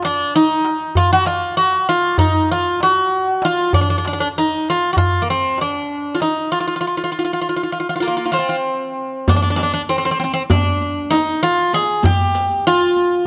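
In a straight 9/8 at 195 BPM, this hypnotic, melancholic Turkish makam ensemble piece in F makam hicaz is carried by a metal-shell darbuka played with hard hands, its crisp, deep strokes sounding close and dry. Up front, a bright, metallic Greek bouzouki picks the melody on its double strings, some of them octave-doubled, ranging from Bb3 to Ab4, and a stop from 6.5 to 9.3 seconds breaks the first section. When the second section begins at 9.3 seconds, a vintage-sounding, band-limited riq with dark jingles joins in the background, all within light reverb and closely detailed microphones on a passage cut from a longer piece.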